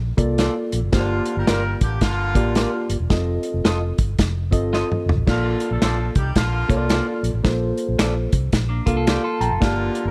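Uptempo 1960s-style soul with a swung, danceable and uplifting feel, built on a round, foam-muted electric bass, a dry drum kit with dark cymbals and a tight kick, and a reedy, slightly out-of-tune electric piano with light overdrive and spring reverb, each placed up front. Slightly broken-up guitar stabs play alongside a distant, roomy horn section with light vibrato. A drum fill arrives at 4.7 seconds, very quiet finger snaps join at 5.8 seconds, and a dark, clean electric guitar riff enters at 8.7 seconds with an electric piano fill, in a small room ambience.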